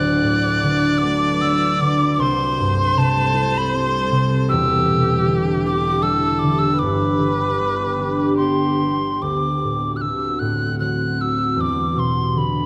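A moderate concert hall reverb surrounds this nostalgic, pastoral Celtic folk slow air in D mixolydian, cut from a longer piece and played rubato at 77 BPM in 3/4, where an airy, hollow wooden whistle with vibrato carries the melody up front over a ringing, thumb-plucked concert harp and a dark, glassy FM pad with ensemble chorus, while a smooth bowed viola adds a second line until 9.2 seconds.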